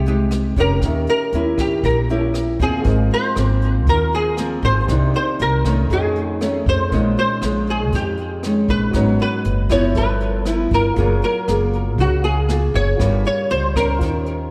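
A sunny, romantic bossa nova excerpt opens with an upright bass, a nylon-string guitar, a grand piano and an archtop guitar sounding together, joined at 0.1 seconds by a jazz drum kit played with brushes. The dark, clean archtop guitar carries the picked melody up front, its hollow-body tone colored by ensemble chorus and tape echo. Beneath it, the bright, small-sounding nylon-string guitar is fingerpicked with a subtle chorus, while the natural-sounding grand piano adds accompaniment in the background. The pizzicato upright bass sits prominently with a woody, steel-strung tone, and the airy, polished brush kit taps out hi-hat, rim click and a boomy kick. Lush harmony drifts through chords like Fm9, Ab69, Bbm11 and Gbmaj9, and the whole mix is soaked in a moderate plate reverb that gives it a dreamy glow.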